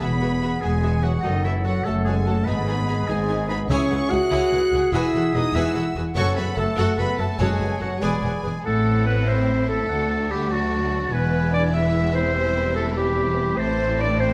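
A swashbuckling, determined cinematic passage in a straight 6/8 at 98 BPM opens with a vibrato-rich studio violin section carrying the melody over clear, vintage-toned solo clarinet and oboe lines, a mellow, hollow flute ensemble, lush background violins, portamento-touched violas, and dark, distant French horns sustaining the chords above smooth, even cellos and double basses. Very quiet, close and dry timpani on medium mallets join at 3.7 s, and the flutes drop out at 8.4 s just before the music shifts from F# dorian to A dorian at 8.7 s. The whole orchestra sits in a moderate recital-hall reverb, and the excerpt is cut from a longer piece.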